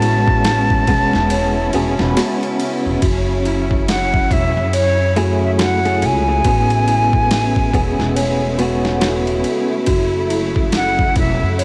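A bright, airy silver flute carries the melody from the opening moment, its expressive vibrato floating over a cinematic, melancholic trip hop groove with a lazy swing on the sixteenths, in a fragment cut from a longer piece. Beneath it, a compressed, overdriven boom bap sampler-style kit with a thumpy kick, medium-tuned snare and ride cymbal sits beside a woody pizzicato upright bass anchoring the low end. A clean, fingered electric guitar with tremolo and vintage 12-bit sampler grit plays accompaniment until 9.9 s, while a delicate, bell-like celesta traces arpeggios. A lush, bowed symphonic string section sustains chords that shift between Amaj7 and F#m7. Tape echo trails the flute and celesta, and the whole recording has a homemade cassette character with light reverb and small room ambience.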